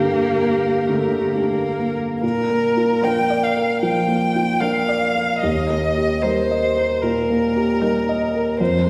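Set in a church-like hall with a lush, reverberant halo, this yearning, elegiac passage from a slow romantic classical movement for piano quartet moves in a rubato 4/4 at 63-77 BPM in Bb major, with a clear, up-front violin singing the vibrato-laden melody over a close, focused cello second line, a rich viola murmuring accompaniment in the background, and a dark, mellow baby grand piano with long sustain, moving from Gm through Bb to Eb before the strings beneath the violin drop away at 8.4 seconds.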